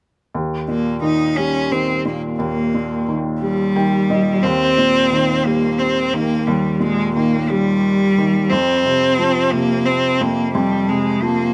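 Light reverb surrounds an up-front pair of instruments in this melancholic, dramatic pop fragment in 6/8, cut from a longer piece. A felt-muted upright piano, intimate, mellow and soft with audible action noise, lays down the accompaniment from 0.3 seconds and adds a short fill from 3.4 seconds, just before the second section begins at 4.4 seconds. A single bowed cello carries the melody in its middle register with a clear, smooth tone and vibrato, while the harmony moves from Eb to F5.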